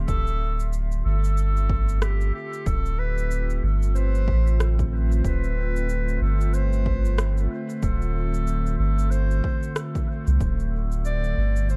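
Ambient dub with a meditative, hazy mood, cut from a longer piece, where a warbling, lo-fi pad with chorus holds sustained chords over a round, up-front sub bass, a distant, roomy clarinet carries the melody through dub echo, overdriven electronic cabasa and rim click add grit, and a punchy layered kick drops out at 10.6 seconds, all set in an echo-heavy digital ambience.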